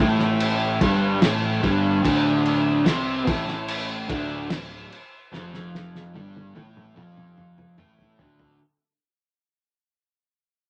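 Over a straight, unhurried 4/4 pulse, this hazy, trippy psychedelic rock fragment sets a double-tracked, overdriven semi-hollow guitar riff up front on a punchy fuzz bass, while a cloth-damped drum kit with a fat snare and dark, muffled cymbals enters at 0.2 seconds and launches into a fill at 5.3 seconds as the whole passage fades out in a moderate studio reverb.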